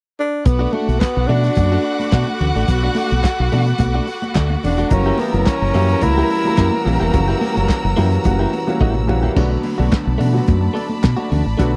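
Disco at 108 BPM in B minor, driving and sultry, cut from a longer piece with a dry, close 1970s-style studio sound. A breathy, subtoned tenor saxophone carries the melody up front until 6.9 seconds over a round, punchy fingered bass, a muffled, lo-fi soul drum kit with handclaps and dark cymbals, ringing high-tuned congas in the background, twangy clean electric guitar, and lush bowed strings holding chords, while an expressive violin section plays a second line. A baby grand piano with short sustain joins at 4.9 seconds as the harmony moves from Bm7 to F#7b9, and a drum fill at 8.8 seconds leads into a new section back on Bm7.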